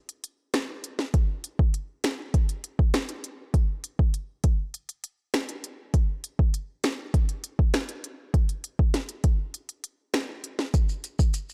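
A straight 4/4 dancehall groove drives this short excerpt cut from a longer piece, its mood tough and hypnotic. An electronic, produced afro-pop drum kit carries the whole passage from 0.1 seconds, built from finger snaps, hi-hat, kick drum, rim click and snare drum. The kick is deep, the snare sharp and the hats crisp, all sitting up front in the mix. Near the close, at 10.7 seconds, bright acoustic maracas enter, miked close and set low beneath the kit. The production is dark and warm, set in a digital ambience.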